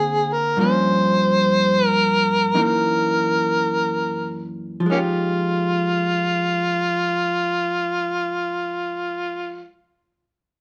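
Romantic and late-night in feeling, this short excerpt from a longer piece is a slow jazz ballad in F minor, moving at roughly 47 to 67 BPM in a swung 4/4 that slows down over the first 4.9 seconds. An overdriven, amplified harmonica carries the melody up front throughout, its gritty tone marked by vibrato, scooped notes and tongue slaps in a jazz solo style. A vintage hollow-body electric guitar accompanies it for the full length, picked cleanly with a dark, compressed sound that also sits close to the listener. The harmony passes through Daug7, Gm7b5 and Gb6 before arriving on Fm9 at 4.9 seconds, where a second section begins. Light reverb lends the pair a modest sense of space.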